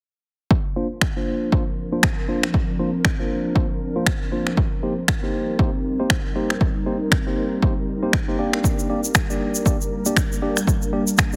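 A punchy, overdriven electronic kick sits up front in this driving, hypnotic afro house cut, moving at 118 BPM in 4/4 with a 58% swing on the sixteenths. Layered, overdriven electronic finger snaps join at 1.0 s, and both carry the roomy character of a large space. A bell-like, clean tine electric piano plays stabs through built-in speakers, shaped by sidechain pumping, a low-pass filter and delay. Beneath them, an ethereal, mellow pad of detuned sawtooth and triangle voices holds sustained chords with a slow attack, long release, ensemble chorus and its own reverb, pumping with sidechain compression as a filter sweep moves through it. The harmony passes from Bbadd9 to Cm7 to Gm, and a grainy, bright, close and dry egg shaker arrives at 8.6 s. The whole mix has a heavily compressed, radio-like sound with light reverb.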